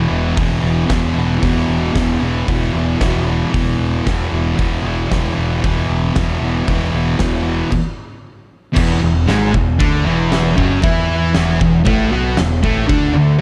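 Garage rock in a raw, rowdy spirit, this straight 4/4 excerpt is cut from a longer piece and sits in a small room. A thick fuzz guitar, double-tracked and up front, drives the riff from the first moment, its bright, distorted tone carrying the music over an E5 chord. Beneath it, a growling picked electric bass runs direct and amped, with overdrive and tube saturation giving it a bright, overdriven bite. An oversized low-tuned drum kit enters at 0.4 seconds, with a fat snare, a punchy kick, crash cymbal and hi-hat, sounding dark and saturated in a stone room. The band hits a stop around 7.7 seconds, then launches into a new section on a full E chord at 8.8 seconds, and the drums drop out at 13.0 seconds just before the clip ends.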